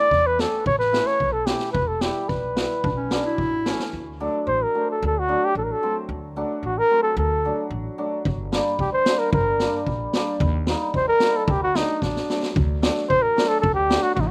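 Soulful and festive, this klezmer excerpt in a straight 2/4 feel is led by a breathy, mellow flugelhorn that carries the melody up front with light vibrato and a jazz-style touch. Beneath it, a pizzicato upright bass gives a woody, thumpy low end, while a hammered dulcimer rings and shimmers as accompaniment. A street-band drum kit with a boomy kick, a medium-tuned snare and a rolled-off top plays through the opening, drops out at 3.9 seconds and returns at 8.3 seconds, later adding a short fill before the final passage. A classical-style clarinet briefly steps forward with a warm second line just before the harmony shifts into a new color. The outdoor recording is dry, with little reverb, so the instruments sound close and direct.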